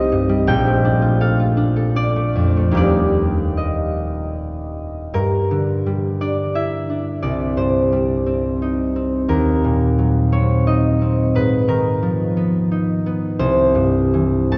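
A solo concert harp sits up front, its fingerpicked strings ringing across a span from Eb1 to C6 in this wistful, mysterious classical fragment cut from a longer piece. The music moves in 3/4 with a rubato feel, its pulse drifting between 73 and 90 BPM, and rests in G minor with the harp tuned to A4 = 441 Hz. The opening passage settles on Bbmaj7 and Ebmaj7 before a new section arrives at 5.1 seconds, turning to Gm6 and Cm. From there the harmony darkens through Ebm6 and Abm6 and comes to rest on a C chord at 13.4 seconds. A heavy cathedral reverb with a long 4.7-second decay surrounds the acoustic harp, and the dark, warm production deepens the music's shadowy, searching character.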